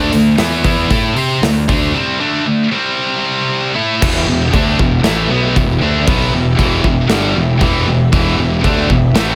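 A scooped, high-gain electric guitar sits up front in this relentless, aggressive heavy metal excerpt, its picked, distorted riff joined by a second heavy guitar with a bright edge. Underneath, a growly fuzz bass, overdriven and picked, drives the low end, while a big acoustic rock kit with a punchy kick, medium-tuned snare, hi-hat and crash cymbals pushes in a straight 4/4 feel. The riff moves through D5, C5 and A5 power chords, with a break arriving at 1.9 seconds. At 4.0 seconds the band drops into a half-time groove on E minor, and a lush, thick, nasal sawtooth pad with chorus and a slow attack enters behind the guitars. Light reverb gives the whole mix a studio-room sense of space.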